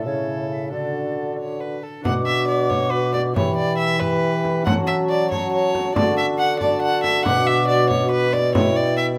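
In a straight 6/8 lilt at 92 dotted-quarter beats per minute, this solemn, courtly renaissance-style consort dance excerpt sets a hollow, pure silver flute melody with vibrato above an up-front, reedy gut-string violin second line, ringing fingerpicked harp, warm trombone and a smooth-topped bassoon bass moving through chords like D, Bm and F#m, with a frame drum struck by hard hands joining at 2.1 s, all in a moderate stone-room reverb.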